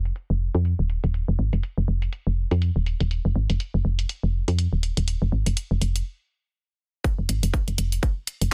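A woody, round FM bass sits up front from the start, its fast attack decaying into a mellow tone roughened by tube saturation and pumped by sidechain compression, moving between Eb1 and F2. This is a sparse, cool excerpt of minimal techno in F minor at 122 BPM in 4/4, with a 57% swing on the 16ths. Layered, warm electronic hi-hats enter at 0.1 seconds and run beneath a filter sweep that lasts until 7.0 seconds, with a stop arriving at 6.1 seconds. The drop arrives at 7.0 seconds with a tight, layered electronic kick drum placed up front alongside the bass. The sound is dry, with a dense, heavily limited modern master shaded by a low-pass filter.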